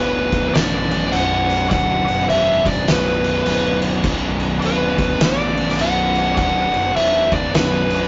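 A compressed, fuzz-soaked lead guitar sits up front, picking out a melody high above the low end of this sludgy, heavy stoner and doom metal passage, cut from a longer piece and set at an unhurried, swung stride on a B minor chord. Beneath it, two thick fuzz guitars grind through low riffs in the background, one warm and the other dark. An overdriven fingered electric bass adds a round, punchy fuzz tone at the bottom of the mix. An oversized, low-tuned acoustic drum kit enters at 0.3 seconds, up front, with a fat snare, punchy kick and dark crash cymbals ringing in a bright, pumping stone room. A very quiet tonewheel organ, full and shouting through a fast rotary speaker with a light overdrive, holds sustained chords underneath. The rough rehearsal-room sound carries light reverb and tube saturation, with the top end rolled off for a murky, saturated finish.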